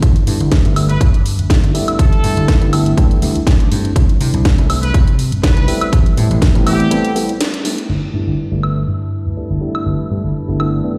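Filtered disco house with a funky, joyful swing, this short cut from a longer piece sets a reedy electric piano with phaser and gritty 12-bit sampler character over an up-front, amped slap bass, a punchy overdriven electronic kick that drops out at 6.5 seconds, and a house kit of cracking snare, hi-hat, woodblock and crash, with the piano, bass and kit pumping under sidechain and filter sweeps, while a brilliant trumpet section with soft attack and dub echo carries the melody until a break near 7 seconds, after which a distant, dark violin section with gut-string tone holds sustained chords in a big, bare-room reverb.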